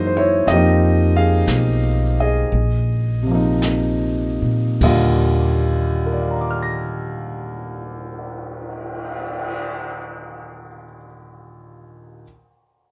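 A late-night, intimate jazz ballad in Eb major, this short excerpt from a longer piece moves at a slow 49-63 BPM in 4/4 with a lazy swing on the eighth notes, slowing down over its first 4.8 seconds. A concert grand piano with a deep bass and an open, up-front tone carries the accompaniment from start to finish, ranging from Eb2 up to Bb6 through Fm9 and Bb9sus4 chords before settling on Ebmaj9 at 4.8 seconds. Plucked upright bass with a woody tone and steel strings sits low beneath it and drops out at 9.4 seconds. A jazz kit played with brushes enters at 0.5 seconds, mixed softly, with brushed snare, hi-hat, ride, a boomy kick and dark cymbals including a cymbal swell, and it sounds natural, as if set in a small room. Light reverb and a dark production give the recording a hushed, after-hours glow, and the piano rings on alone at the close.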